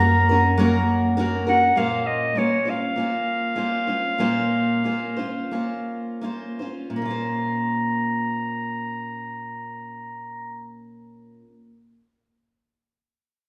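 A bright clarinet carries the melody up front in a classical, solo style, its vintage tone ranging from Db5 to Bb5 until it stops at 10.7 seconds. This short, reflective and wistful excerpt, cut from a longer acoustic folk piece for a duo or small band, sits in Bb minor in 4/4 with a straight feel, moving between 80 and 102 BPM. A picked steel-string acoustic guitar supplies warm, up-front accompaniment throughout, with finger squeaks and an auditorium character, before ending at 11.5 seconds. A fingered electric bass, dark, round and punchy, holds a single Gb for just the opening 1.7 seconds. The harmony moves from Gb to Bbmadd9 at 1.8 seconds, where the tempo begins slowing down through 6.9 seconds. A wet recital-hall reverb with a 1.5-second decay places the performance in a church or concert hall.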